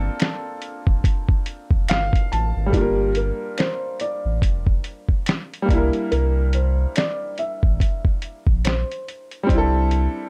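A swung 71 BPM lo-fi hip hop groove in G dorian opens this hazy, melancholic excerpt, with a muffled, pitched-down sampler-style drum kit and thumpy kick up front, a round sine sub bass, a woody upright piano in plate reverb adding a fill from 1.5 to 2.7 s, a very quiet saturated finger snap, and a felt-muted upright piano with audible action noise carrying the melody through tape echo from 2.7 s as the chords move from Gm11 through Gm7 and C9 to a rootless Fmaj13.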